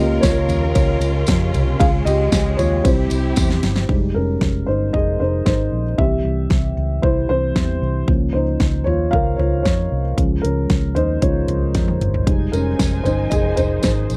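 An up-front, woody upright piano with a dark, boxy tone and long sustain carries this dramatic, bittersweet excerpt of piano-driven pop in F minor at 115 BPM, moving through chords such as Bbm/Db, Db, C and Fm7. A round, foam-muted electric bass and a punchy, produced drum kit with a fat snare hold the groove, with drum fills at 3.4 and 11.7 seconds, while lush bowed strings with vibrato and portamento and a jingly background tambourine appear at the opening and return near 12.3 seconds. The dry, close sound recalls a 1970s studio.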